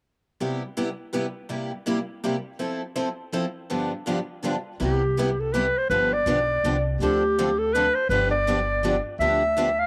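A moderate spring reverb gives this excerpt from a longer piece a roomy, ringing sound. It is a lively, swinging acoustic string swing number in the jazz manouche style, set in a lilting three-beat metre. Two picked steel-string acoustic guitars open at 0.4 seconds, playing bright accompaniment: one up front with a boxy, parlour-sized tone, the other with the voice of an auditorium body. The harmony cycles through major seventh, dominant seventh and minor seventh chords. At 4.8 seconds the second section begins. A warm clarinet steps up front as the jazz soloist, with a soft attack and gentle vibrato, while an upright bass enters beneath it, its pizzicato gut strings sounding woody, dark and thumpy.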